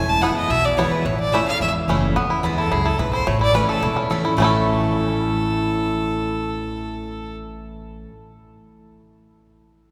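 A clear, nasal bowed fiddle carries the melody up front from the opening, joined at once by a full-bodied picked steel-string acoustic guitar and a woody, pizzicato upright bass, with a twangy fingerpicked banjo adding percussive arpeggios from 0.2 seconds, in a rustic, virtuosic bluegrass passage at 217 BPM in A major that moves between E and A chords, bathed in cathedral reverb from a church or concert hall, until the fiddle stops at 7.4 seconds and the other three play on to 8.1 seconds.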